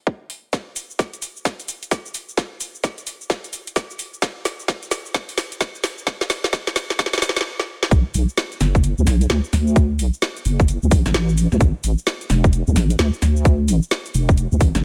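Skippy and moody, this two-step UK garage excerpt opens with a tight, up-front electronic kick and a layered garage kit of cabasa, metallic hats and a woody snare, building through drum fills to a brief stop at 7.5 seconds before a deep, dark wobble bass with chorus and sidechain pumping arrives at the drop at 7.9 seconds, all set in a digital ambience with studio reverb on the drums.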